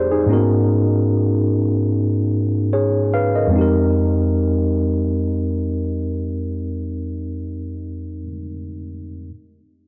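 A lone tine electric piano opens this moody, late-night R&B fragment, its barky, worn tone sitting up front as if heard through the instrument's own built-in speakers. The playing moves at a slow 74 BPM in 4/4 with a gentle swing on the sixteenths, spanning from deep low notes up into the upper register. The harmony rests first on an Abm11 chord, then shifts to Fm11 at 3.5 seconds, giving the short passage two distinct halves. The piano is slightly out of tune, tuned to A4 = 436 Hz, yet its sound stays clean. The dry, gritty recording keeps the sound close and intimate until the cut at 9.3 seconds.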